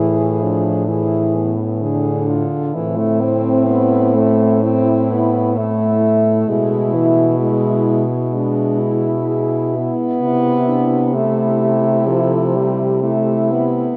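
A dark French horn with light vibrato and a soft attack sits up front in this elegiac, solemn classical fragment for horn quartet, its distant, roomy accompaniment carrying the weight alongside a mellow bass horn whose smooth top also stands forward. Further back, a clear horn sings the melody with gentle vibrato while another mellow horn weaves a second line, all four parts sounding throughout the 14 seconds in a freely breathing rubato. A long cathedral reverb bathes the ensemble in a warm, shadowy glow as the harmony moves from an E7 over A into A minor, then through E over B to A minor over C, and the music is cut from a longer piece.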